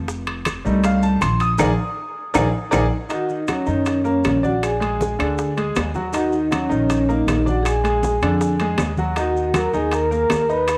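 A mellow vibraphone played with soft mallets carries the melody from 3.1 seconds, its metallic, ringing tone shaded by a fast motor vibrato and a cassette-tape color, sitting up front in this driving, fiery salsa excerpt in Eb minor at 158 BPM. Before it arrives, a bright grand piano opens with a solo, its brilliant, intimate sound marked by audible action noise and its tone also carrying a tape color. The band hits an accent at 1.6 seconds and a drum fill leads into the vibraphone's entrance. A dark, woody pizzicato upright bass anchors the harmony up front, while thick-skinned, low-tuned congas, grainy maracas and vintage-sounding claves sit in the background. Tight, high-tuned bongos struck with hard hands stay very quiet beneath ringing metal-shell timbales heard in a live room, and the whole home cassette recording carries a light studio reverb over a F7 to Bb7 to Ebm7 progression.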